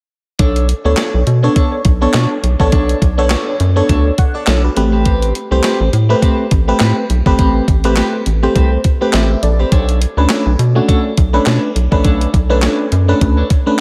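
A rubbery square-wave bass sits up front in this slick, danceable slice of early-eighties boogie funk, its hollow, nasal tone given a bouncy filter pluck and a dark, sustained body. Beside it, a crisp 8-bit drum machine supplies a thumpy kick, a medium-tuned snare, hi-hat and handclaps with a sampler-style character, as if re-recorded in a small room, all carried on a swung sixteenth-note feel. An FM electric piano arriving at 0.8 seconds adds glassy, bell-like accompaniment with a faint noise layer, shimmering through chorus and phaser. Further back, a clean, picked electric guitar plays a riff with a subtle chorus. The harmony moves from Bm9 to Am9 and back to Bm9 at 9.7 seconds, and a moderate plate reverb soaks the whole mix in a dreamy haze.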